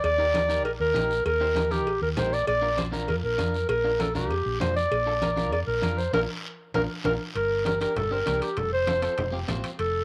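Moderate spring reverb and small-room ambience frame this fiery, danceable cumbia excerpt at 197 BPM, where an up-front, classical-style clarinet carries the melody over a dark, round hollow-body fingered electric bass, with a slightly broken-up, compressed picked electric guitar adding accompaniment from 0.2 s, alongside ringing medium-tuned congas, close and dry cowbell and timbales in the background, and a raspy guiro, before a band accent and drum fill lead into the move to Gm at 7.4 s.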